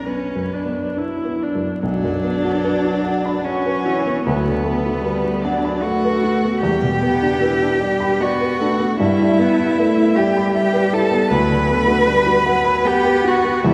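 In a rubato 3/4 at 76 BPM, this slow, melancholic and yearning romantic movement for piano quartet in B minor moves from Bm through Em7 and back to Bm/D, in a passage cut from a longer piece. A focused violin with vibrato sings the melody in its upper register but sits softer in the mix, while a rich, close cello carries an up-front second line and a smooth, even viola fills in beneath, each a single bowed player. An intimate baby grand piano, with audible action noise and short sustain, shares the accompaniment up front, and the church acoustic adds a long, wet reverb along with a layer of vinyl crackle.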